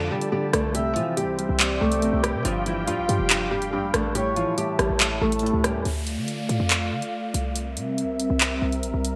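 A half-time drill beat at 141 BPM in D minor sets a cold, ominous tone, with an up-front electronic kit of handclaps, hi-hat and rim click in gated reverb over a punchy, tight 808-style bass. Above a detuned, warbling sawtooth pad, a fingerpicked flamenco guitar with finger squeak carries the melody through chorus, low-pass filter and delay, joined by a felt-muted upright piano with audible action noise and, from 0.7 s, a breathy, flute-like synth lead. Guitar and piano stop near 5.9 s, leaving pad, bass and drums under a faint electronic downlifter in this bright, 1980s-style digital mix with light reverb.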